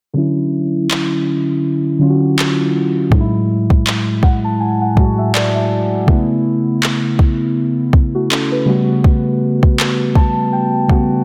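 Muted, felt-like synth keys sit up front, their dark, intimate tone thickened by chorus and shaped by a filter sweep that runs through the whole passage, with fills at 3.9 and 9.8 seconds over a progression moving from Dmaj9 through F#m9 and B9sus4 to A13. A smooth, electronic R&B kit enters at 0.9 seconds, its soft kick and handclaps roughened with overdrive and pushed close, while the 81 BPM groove carries a gentle sixteenth-note swing. This moody, sensual slice of contemporary R&B sits in light reverb under a dense, heavily limited modern master.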